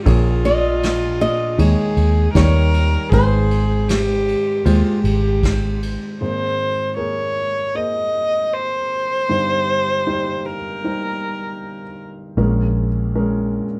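An acoustic folk-pop ballad in Ab major at 78 BPM, hopeful and nostalgic, opens with a woody upright piano, a round, foam-muted fingered electric bass, a brushed drum kit with dark cymbals and a punchy kick, and a fingerpicked flamenco guitar carrying a short, fresh-stringed melody until 5.4 seconds. The drums stop at 6.0 seconds, and from 6.2 seconds the close, intimate viola takes a solo, bowed sul tasto with light vibrato and an airy, soft attack over the piano, whose action noise stays audible. The bass returns briefly near the end, and the production is dark with light reverb.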